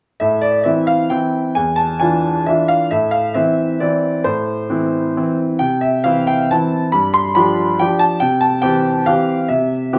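A solo grand piano opens this bittersweet, elegant classical waltz almost at once, its tone clear and smooth with a vintage character and a long sustain. Set up front in a light reverb, the single piano covers a range from low bass notes up into the upper treble. The waltz moves in three with a rubato feel, so the pulse stretches and gives instead of holding to a strict beat. The harmony begins on A minor and passes through an E7b9 before returning to A minor, then turns at 5.6 seconds toward C, G7 and back to C. This brief passage, cut from a longer piece, ends at 10.0 seconds.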